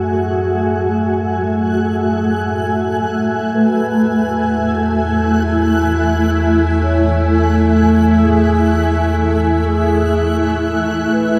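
Ambient music, serene and spacious at a slow 64 BPM in straight 4/4, drifting from F#m9 to A5/E inside a huge, dark reverb in this short cut from a longer piece. A cloudy, granular pad holds sustained chords up front while a deep, round sub bass sits underneath, and a mellow, airy alto flute with vibrato carries the melody in the background through a diffuse ambient delay. From 0.3 seconds a reversed, dreamy texture swells high above, and the sub bass, texture and flute all fade in across the passage.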